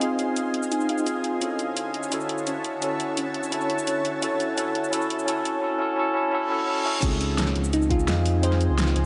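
This is a lush, uplifting stretch of liquid drum and bass, cut from a longer piece and opening on a build-up that runs to 7.0 seconds. A clean tine electric piano sits up front through a combo amp, its medium tremolo and tape echo colouring chords from Dbmaj9 to Dmaj9 while a filter sweeps across it, beside a shimmering, ethereal pad with octave-up shimmer and chorus. A soft, harp-like synth pluck rings out arpeggios in the background, swept by its own filter and dressed in phaser and diffuse ambient delay. Beneath them, an overdriven pop drum kit with a fat snare, warm hats, cabasa and crash keeps the straight feel, and a reverse cymbal rushes in just before the drop. At 7.0 seconds a smooth, gliding sawtooth bass arrives up front with portamento, joined by a knocking, overdriven electronic kick as the harmony returns to Dbmaj9. The whole mix is dreamy and soaked in a wet church reverb, its top end gently rolled off.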